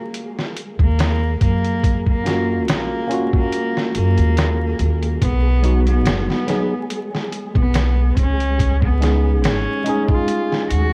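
Smoky and melancholic, this trip hop fragment, cut from a longer piece, moves at 71 BPM in Eb minor with a gentle swing on the sixteenths. A flickering, granular texture sits in the background from the start, soon joined by a sampler-style drum kit that sounds compressed, pitched down and gritty, with a thumpy kick, medium-tuned snare and hi-hat placed up front in a small room. At 0.8 seconds a bowed cello carries the melody with a dark, smooth vibrato and a touch of tape echo, while a woody, pizzicato upright bass anchors the low end up front. A worn, slightly out-of-tune tine electric piano enters at 2.2 seconds with harmonic tremolo and tape echo, outlining chords that move from Ebm7 to B and then Dbsus2. The whole recording is dry yet aged, coloured by warbling cassette tape, pitch drift and vinyl crackle.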